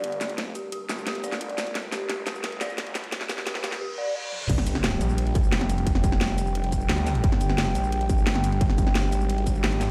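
A straight 4/4 pulse at 175 BPM drives this aggressive, mechanical slice of dark technical drum and bass in G phrygian, with an overdriven drum kit of cracking snare, bright hats, shaker, toms and crash running a fill through the build-up while a snarling, detuned sawtooth bass growls up front and a nasal, moody analog pad holds sustained chords underneath. For the first 4.3 seconds an eerie, inharmonic FM bell spins chorused, phased arpeggios with digital delay, and a very quiet riser, reverse cymbal and sub drop carry the build toward the drop at 4.5 seconds, where a distorted, tape-warm electronic kick enters. The whole mix sits in light digital ambience and a stone-room reverb, as if blasting from a big sound system in a bare room.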